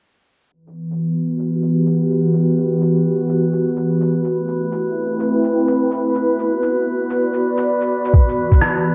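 An airy, breathy pad sits up front in this melancholic, nocturnal future garage excerpt, its dark, detuned chords entering at 0.5 seconds with slow attacks, long releases, chorus and sidechain pumping. The harmony moves from Emadd9 through Am7 and Bm to Em9 in E minor, at 126 BPM in 4/4 with a swung sixteenth-note feel. A drifting glass-harmonics texture holds a calm, glassy B4 quietly in the background from 1.2 seconds, its bright sine overtones softened by chorus and its own reverb. A muffled, pitched-down electronic shaker and rim click run underneath, low-pass filtered and re-recorded in a large room, while a thumpy, compressed kick arrives up front only at 8.1 seconds. Filter sweeps across the drums and the pad, a moderate plate reverb and a filtered take on bright 1980s-style digital production give the whole a hazy, late-night sheen.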